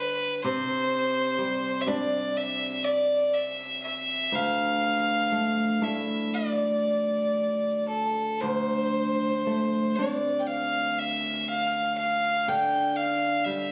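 A bowed fiddle and a fingerpicked acoustic flamenco guitar begin together, both up front, in a mournful, haunting Celtic folk piece in D minor. The tempo drifts freely between 57 and 64 BPM in a rubato 4/4, giving the music an unhurried, searching quality. A single fiddler carries the melody with a biting, earthy tone and light vibrato, sitting in the upper register, while the dark-toned guitar supports it from the low strings up through its middle range. The harmony moves from Csus2 to Dmadd9, then opens onto a bare D5 at 8.4 seconds, where the opening phrase returns, and settles on G5/D near the close. A moderate recital-hall reverb and a captured-on-a-phone room sound frame this short fragment of a longer piece.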